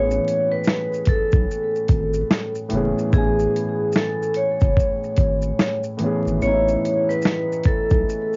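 A ringing, hard-mallet vibraphone carries the melody over a dark, woody upright piano and a deep, saturated sub bass from the first instant, all on a single Amaj9 chord in A major, in this nostalgic, cosy lo-fi hip hop excerpt at 73 BPM with a 16th-note swing. A gritty, sampler-style soul drum kit joins at 0.1 seconds with a thumpy kick, medium-tuned snare, hi-hat and shaker, sitting up front. The vibraphone's slow motor vibrato and tape echo, together with the cassette haze on the drums, piano and vibraphone and the vinyl crackle over the home-recorded sound, give it a dusty, muffled glow, and the bass drops out at 8.0 seconds just before a short break.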